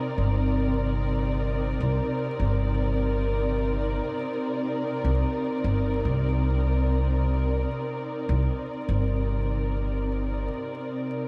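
A vinyl crackle sits under a moderate echo chamber reverb with a 1.5-second decay, giving this short excerpt from a longer piece a close, shadowy atmosphere. It is an ambient dub passage in C minor at 74 BPM in a straight 4/4, deep and meditative, resting on a single Cm7 chord throughout. A dark studio string section holds lush, bowed sustained chords up front from the opening moment, its ensemble sound smooth on top and touched with vibrato. An upright bass enters at 0.2 seconds with thumpy, woody pizzicato on gut strings, placed up front and given tube saturation. The bass stops at 10.5 seconds, leaving the strings to carry the final moments until 11.3 seconds.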